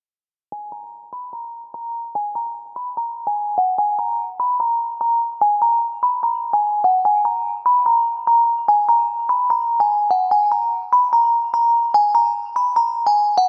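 A lush hall reverb with a long tail surrounds this dark, menacing hip hop fragment, cut from a longer piece. It moves at 147 BPM in 4/4 with a half-time feel, giving it a slow, heavy stride. The only voice is a glassy FM synth bell, placed up front, carrying the melody high in its range from 0.5 to 13.5 seconds. Its crystalline, vintage tone has a fast attack and decaying notes, with a warbling chorus on top. A low-pass filter sweep runs across the bell for the whole passage, shading its brightness and adding to the ominous mood.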